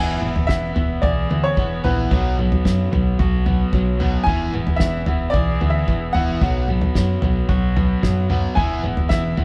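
A band playing live together in one stone-walled room, with a moderate reverb that gives the whole take a shared, roomy air, opens this short indie rock fragment cut from a longer piece. The mood is wistful yet carefree, moving at 111 BPM in a straight 4/4 feel in E mixolydian, with the harmony shifting between E and B5. A clear, intimate upright piano carries the melody in a woody, natural voice with short sustain, its action noise audible up close. Two crunchy, bright overdriven electric guitars play picked riffs beneath it, one reaching lower and the other sitting a little higher and quieter. A dark, round, punchy hollow-body short-scale bass sits in the background, and the cloth-damped drum kit joins at 0.2 s with a fat snare, tight kick and toms, sounding dry, smooth and rolled-off at the top.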